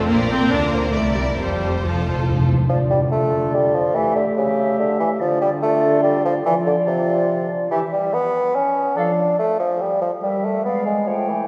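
A bassoon sits up front in this quick, stormy classical-period movement in D minor at 143 BPM in 3/4, carrying the accompaniment from 2.7 seconds alongside a pure, distant flute section, a roomy clarinet in the background and a mellow French horn section holding sustained chords. Before that, for the opening 2.5 seconds, bowed string sections play with vibrato: one violin section takes the melody while another plays a second line, the viola section is close and up front, and the cello and double bass sections carry the bass, the cellos lush and set back. Hard-mallet timpani strike an articulate fill from 1.4 seconds, and the whole dramatic fragment, cut from a longer piece, rings in a wet church reverb with some lossy compression artefacts.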